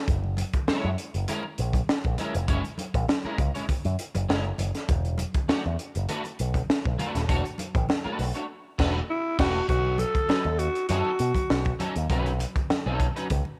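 Light studio reverb frames this playful funk excerpt, with a crisp acoustic fusion kit of high-tuned snare, punchy kick, hi-hat and crash pumping in a small room up front beside a bright picked electric bass pushed through an envelope filter. Ringing, hard-hand congas sit in the background while a twangy, slightly broken-up electric guitar adds chorus-thickened chords over F#9 and E9sus4, and after a band accent the harmony moves to B9 at 9.7 seconds. A breathy, raspy alto saxophone with vibrato steps forward for a brief solo phrase from 9.1 to 11.8 seconds.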